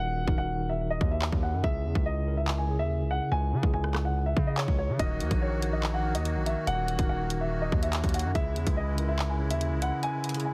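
A heavy, aggressive distorted 808-style bass with a fast attack and a noise layer drives this cold, menacing half-time drill cut at 143 BPM in Eb phrygian, where a dark, intimate baby grand piano with audible action noise carries the filtered melody over mellow tine electric piano accompaniment, a hard-clipped kick, bright hats, handclaps and rim clicks punch up front, and a reedy, shimmering musette accordion joins at 5.0 seconds, the dry mix squeezed into a heavily compressed radio sound.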